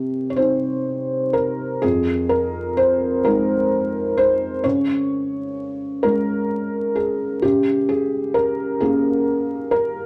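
Neoclassical minimalist piano in a wistful, reflective 6/8 with a rubato feel, this short excerpt from a longer piece features a solo felt-muted upright piano, mellow and intimate with thick felt and audible action noise, placed up front in light reverb over vinyl crackle as its chords shift from Cm to Fm7 at 1.8 seconds.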